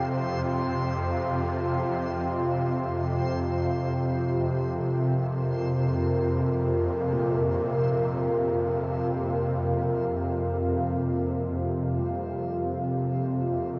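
Drenched in a huge, cavernous reverb, this dark ambient drone fragment floats in free time over an Fsus2 chord, with an up-front, swarming, detuned granular drone low in the range beneath a deep, moody pad of chorused sustained chords, a faint, bright reversed texture swelling in the upper register, and a very quiet, natural grand piano entering with low arpeggios at 7.1 seconds.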